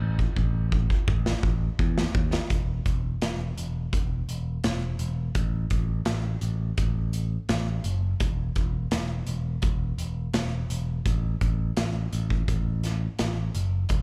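A straight, steady 4/4 groove drives this confident classic rock passage, cut from a longer piece. The picked electric bass sounds from the very start, holding down the low end between E1 and E2 with a bright, growly, amped tone that sits up front. The big acoustic rock drum kit comes in at 0.2 seconds with a fill that runs to 2.5 seconds, after which the main driving section carries on to the end at 14.0 seconds. Hi-hat, a punchy kick and a medium-tuned snare fill out the kit, also placed up front in the mix. The recording has the feel of a live gig heard through the venue's PA, with a touch of club ambience around the pair.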